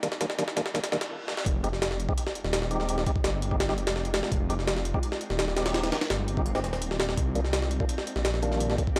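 Drum and bass with a jungle flavour, atmospheric and nostalgic, opening on a short build-up where a pitched-up, gritty sampler-style drum kit with a thumpy kick and high-tuned snare plays a fill over a blurred granular cloud pad, fat overdriven tonewheel organ stabs with key click, fast rotary speaker and dub echo, and a very quiet electronic riser and reverse cymbal, before a brief stop. At 1.5 seconds the drop lands with an impact and a thick, beating, menacing detuned saw bass sits up front beside the compressed, tape-toned drums, as the chords move from Cm7 to Fm7 and return to Cm7 at 7.2 seconds. The dry hardware recording carries transformer saturation and light reverb, and this is cut from a longer piece.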